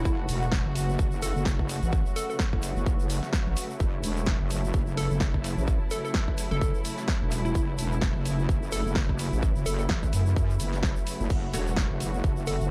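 Bouncy and swaggering, this dark bass house excerpt with swung sixteenths rides a heavy, saturated, detuned wobble bass and a layered electronic kick up front, backed by a house kit of punchy snare, bright hi-hats and crash, a grainy egg shaker tucked behind, a hollow square-wave pluck melody with chorus and dub echo, veiled con sordino strings holding sustained chords, and an ethereal, airy pad drifting in reverb, with the strings, bass and pad all sidechain-pumping, before a bold, very quiet orchestra-hit-like synth stab flashes at 11.5 s.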